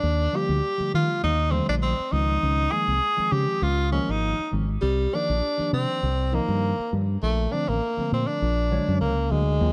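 A light reverb frames this slick, driving electric jazz fusion excerpt at 100 BPM in 4/4 with a gentle sixteenth-note swing, where a clear tenor saxophone with light vibrato and scooped notes leads up front over a round, punchy fingered electric bass, while a worn, slightly out-of-tune tine electric piano with overdrive and lush chorus enters at 0.3 seconds in the background, moving from Ebmaj9 through Dbmaj9 and Cm11 to Bbmaj7 and a closing Bb7alt.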